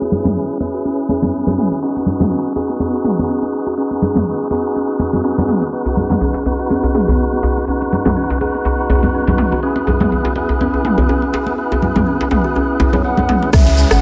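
A swung afro house groove at 123 BPM in 4/4 carries this earthy, hypnotic excerpt, built on ringing, close congas and a layered, overdriven house kit with bright hats, rim click and toms, the kit's filtered as a sweep runs across the first 13.5 seconds. Over it, a woody kalimba plucks dark, hollow arpeggios through a low-pass filter and delay, pumping against the sidechain, while a fat tonewheel organ adds lightly overdriven stabs with key click and a fast rotary speaker. A tight, cracking djembe joins up front at 5.9 seconds, as the harmony moves from C#m7 to B and then E. Near the close, at 13.0 seconds, an airy pan flute with a chiffy attack and vibrato enters, and at 13.5 seconds a round sine sub bass, a punchy overdriven electronic kick, a grainy shaker set back in the room and an electronic downlifter arrive together. A lush hall reverb lends the whole a moderate sense of space.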